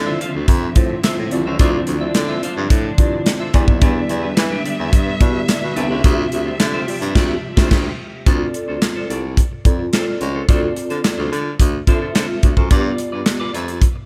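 Danceable and late-night, this early-eighties boogie funk excerpt in D dorian moves at 108 BPM in a straight 4/4, with an up-front, tight-kicked drum kit of crash, handclaps, hi-hat and snare alongside a distant, roomy baritone saxophone bass with vibrato, while a mellow tine electric piano with ensemble chorus and a dark, fingered semi-hollow guitar riff with analog chorus play over lush bowed strings that sustain chords until 8.2 seconds, near the end of a band accent that closes the first section, all set in light reverb and small room ambience over chords moving from Dm9 through Em7 and Dm11 to Dm7 and G7.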